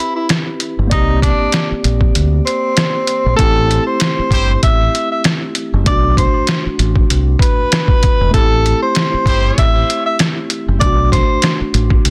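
A dry, dense and heavily limited mix carries this short cut from a longer boom-bap hip-hop piece, reflective and dark, moving at 97 BPM in 4/4 with a swung sixteenth feel in A dorian. Up front, a compressed, pitched-down sampler-style drum kit lays down a muffled, thumpy kick, a medium-tuned snare, rim clicks and hi-hat, with the kick muted between 2.1 and 3.4 seconds. A mellow, clean tine electric piano voices the chords from the start, opening on a rootless Am9 and Csus2 before moving between Am7 and Bm7, its tone coloured by cassette tape and filtering. A deep, round fingered electric bass joins at 0.8 seconds with a dark, directly amped sound. The breathy tenor saxophone leads as a jazz-style solo, warm yet distant and roomy, with light vibrato and scooped notes, filtered and trailed by tape echo. A bright trumpet section adds two brief classical-style ensemble stabs, likewise filtered and touched with tape echo.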